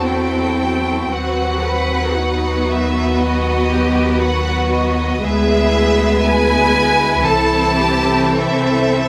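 Classical slow romantic movement for string orchestra, melancholic and elegiac, in which a smooth, vibrato-laden violin section carries the melody up front over a close, even second violin line, lush violas, a cello section with a smooth top and a clear, focused double bass section, all bowed with rubato in the moderate reverb of a large room, heard in a short cut from a longer piece.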